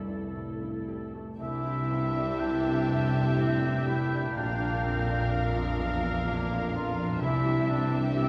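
Piano, harp arpeggios, and muted, veiled viola and cello sections open this tender, uplifting cinematic orchestral piece in a slow, rubato 3/4 in C major, joined at 1.4 seconds by a lush con sordino violin melody, a warm oboe, a bright clarinet, a second violin line, mellow French horn chords and close double basses, all moving from C6 through Bb to Cadd9 in a wet recital hall.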